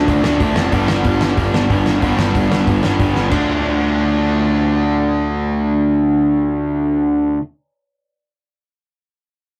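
Angry and raw, this punk rock excerpt charges along at 185 BPM in a straight 4/4, centred on D dorian and moving from Dm to G before returning to Dm at 3.3 seconds. Two picked electric guitars drive the riff throughout: an overdriven one sits up front with a bright edge, while a distorted one hangs in the background, both cutting through the rough rehearsal-room sound. Underneath, a fuzz picked electric bass growls low, its overdriven, direct-and-amped tone adding grit to the foundation. A loose indie drum kit pushes the first half with a punchy kick, fat snare, hi-hat and dark crash cymbals in a pumping room, firing off a fill at 3.2 seconds before dropping out at 3.4 seconds. From there the guitars and bass carry on alone in the moderate booth ambience.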